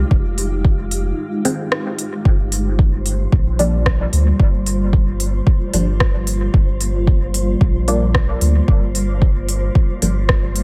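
Nocturnal and meditative, this dub techno excerpt moves at 112 BPM in 4/4 with a light swing on the sixteenths, drifting from Fm7 to Gm7. A deep electronic kick drum sits up front, joined by a deep house kit of smooth hi-hats and rim clicks trailed by dub echo. Underneath, a round, soft dub sub bass pulses with sidechain pumping, while a cloudy granular pad holds blurred, full-bodied sustained chords bathed in its own reverb. From 1.4 seconds a muted, dark chord stab enters, its detuned sawtooth tone pluck-filtered and swept by a phaser, a moving notch and dub echo. High above, a breathy, wind-like tuned noise layer hovers faintly in its own reverb, and the whole sits in a digital ambience, with a brief break between 1.2 and 2.3 seconds.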